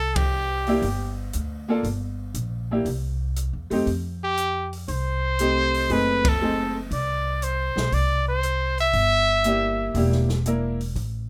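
A punchy, forceful trumpet with light vibrato leads this relaxed, swinging excerpt of small-group swing and bop at 118 BPM in C mixolydian, breaking off after its opening phrase and returning at 4.2 s, over a woody pizzicato upright bass, a brilliant, open upright piano, and an acoustic drum kit with dark cymbals and a boomy kick in a small room, with band accents at 0.1 and 6.2 s, all set in light reverb as the chords move from C7sus2 through F9 and F#dim7 to Em7b5.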